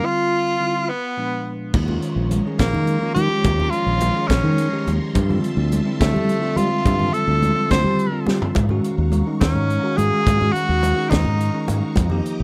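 A straight 6/8 pulse drives this nocturnal electric jazz fusion fragment. It opens on a short break where two tenor saxophones sound together over a bell-like tine electric piano: an edgy lead with vibrato, scooped notes and tape echo, shadowed by a warm, close-miked second tenor with a soft subtone. At 1.7 seconds the second saxophone has dropped out, and the full band arrives. A crisp, up-front acoustic drum kit with a punchy kick and high-tuned snare is joined by a direct, amped fingered electric bass and soft-handed congas in the background. A swirling vintage string machine with ensemble chorus and phaser holds sustained chords far back in the mix while the clean, bright electric piano keeps up its accompaniment. The lead sax carries the solo melody over lush suspended chords, a drum fill lands at 8.3 seconds, and the dry, close sound keeps the playing immediate and driving.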